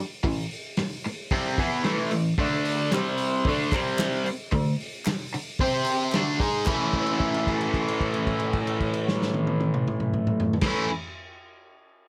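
Rowdy and raw, this garage rock fragment drives a bright, overdriven, double-tracked electric guitar riff with a phaser over a muffled, lo-fi vintage drum kit with dark cymbals and a punchy kick, while hollow group handclaps sit in the background from 2.9 to 6.9 seconds and a held note rings out from 6.7 seconds under light reverb.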